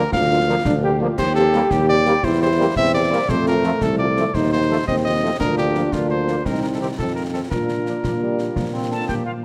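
A moderate stage reverb gives this proud, spirited military-style march for wind band a roomy, ceremonial sound as it moves in 6/8 at 114 BPM in Bb major. Up front, a warm solo cornet carries the melody over a mellow French horn section and a euphonium second line, while a soft-attacked trombone section holds sustained chords in the background and a distant tuba anchors the bass beneath close, dry concert snare, bass drum and dark clash cymbals. At 8.9 seconds a bright wooden piccolo with vibrato enters on a brief second line just before the music cuts off.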